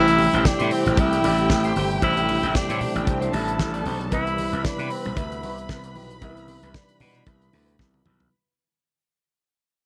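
A swung 16th-note disco groove at 114 BPM in 4/4 drives this sultry fragment, built on a growly, overdriven slap bass up front and a damped 70s kit with a fat snare and tight kick, while soft-handed, low-tuned congas sit very quietly beneath. Over Am7 moving to Cmaj7, a breathy, intimate tenor saxophone carries the melody with subtone, vibrato and scooped notes through analog delay. Alongside it are a lush, dark violin section with portamento, a clean picked electric guitar through wah, a very quiet tine electric piano and a tight, mellow French horn section holding chords in the background, all in a small room as the passage fades out under a filter sweep, with a drum fill arriving at 7.8 seconds.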